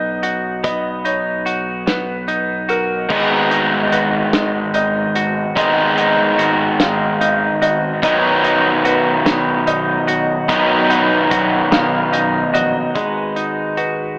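Hopeful and euphoric, this post-rock passage moves at a slow 49 BPM in 6/8 with a straight feel, cut from a longer piece and colored by an AM radio sound inside a lush hall reverb. A clean, compressed semi-hollow electric guitar sits up front with picked arpeggios through tape echo, while a soft, felt-muted upright piano adds mellow arpeggios in the background, its thin felt and audible action noise giving an intimate touch. A very quiet pedal steel guitar, played with fingerpicks and slide, holds sustained chords with volume swells, and a gritty, saturated synth bass built from square, sawtooth and sine waves with oscillator sync anchors the low end. A loose indie drum kit recorded in a small room, with dark cymbals and a punchy kick, plays from 0.2 seconds. At 3.1 seconds a bright, crunchy overdriven guitar enters up front with a picked riff soaked in spring reverb, stopping at 12.9 seconds as the harmony moves between Badd9 and G#m7.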